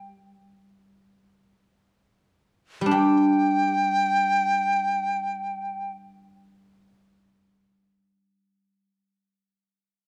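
Close, detailed microphones and light reverb give this short excerpt of Chinese traditional chamber music an intimate, up-front presence. A guzheng, played with fingerpicks, carries the accompaniment throughout in a silvery, ringing middle register, and its opening passage slows down before the melody arrives. At 2.9 seconds a reedy bamboo dizi enters on a high, airy note, its buzzing membrane and tongued attack colored by vibrato. The dizi sings only briefly, falling silent at 5.9 seconds while the plucked strings continue to sound. The rhythmically free feel and warm, silvery tone colors give the fragment a pastoral yet festive mood.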